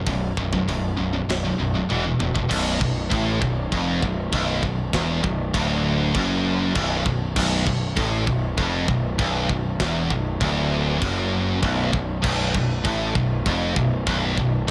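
Aggressive and epic, this heavy metal excerpt in B minor moves at 98 BPM in 4/4. It is built on a double-tracked, high-gain guitar riff up front, with a growly fuzz bass in the low end and a tight acoustic drum kit of china and crash cymbals, kick, snare and toms. A drum fill at 1.9 seconds leads into a half-time feel from 2.5 seconds, where the harmony moves from B5 and E5 to B minor. The picked guitar is bright, the overdriven bass is direct and amped, and the mid-forward drums have a rolled-off top inside a studio reverb.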